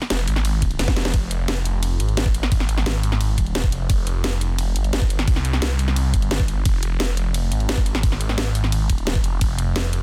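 Dark, technical drum and bass with a mechanical, aggressive mood, cut from a longer piece, where a swirling, thick detuned saw bass sits up front with phaser, overdrive and sidechain pumping, a layered drum kit of hi-hat, ride and cracking snare breaks into a short fill at 0.8 seconds, and a knocking electronic kick drives through a dense, heavily limited, dry mix.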